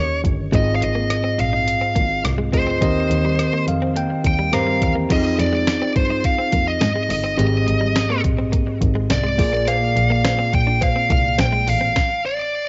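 A straight 4/4 pulse drives this moody, urgent 1980s-style pop passage, cut from a longer piece and set in a light digital ambience with a dulled, cassette-home-recording sound. A clean 12-bit drum machine, re-recorded in a small room, supplies a thumpy kick, fat snare, hi-hat, rim click and crash, while a bowed double bass with a reedy, gut-string tone sits distant beneath it. Up front, a dark, high-gain lead guitar carries the melody through distortion, beside a bell-like, bright tine electric piano that plays a fill from 3.4 to 5.1 seconds. In the background, a direct-recorded, scooped and compressed clean guitar picks a riff through subtle chorus and analog delay, and a metallic vintage cowbell joins at 9.7 seconds. The harmony moves from Eb7 through Fm7 and Abmaj7 to Bb7 before the parts break off in a stop at 12.0 seconds, with the lead guitar carrying on briefly past it.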